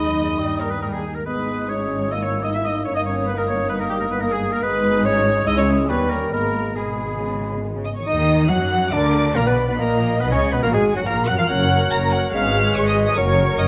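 Restless and urgent, this quick classical-period movement for symphony orchestra moves with a rubato feel, and the passage is cut from a longer piece. A rich, focused violin section carries the melody with vibrato and a smooth top, while a second violin section sits in the background. Oboe, clarinet and flute add second lines from further back: the oboe clear with light vibrato, the clarinet mellow and distant, and the flute airy and hollow. Bassoon and a viola section supply accompaniment, a dark, roomy French horn section holds sustained chords, and cello and double bass sections anchor the bass, the cellos adding portamento and the basses sounding distant. At 8.1 s the music turns to a new section in a different key. Close, detailed microphones and light reverb keep the ensemble's detail present.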